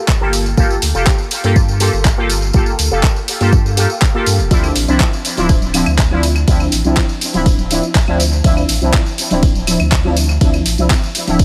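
Deep and meditative, this dub techno excerpt in G minor moves at 122 BPM in a straight 4/4, with a juicy, detuned sawtooth polysynth up front playing resonant stabs through chorus, phaser, ring modulation and dub echo while a filter sweep runs across its full length over Gm9 and Dm9 chords. An up-front electronic kick and a tape-warm house kit of handclaps, hi-hat and ride, re-recorded in a small room, play alongside a round sine sub bass with tube saturation and sidechain pumping, while a jingly, band-limited vintage tambourine adds sparkle. At 4.6 seconds, background claves and congas enter with sidechain pumping and dub echo, all in a fairly dry mix.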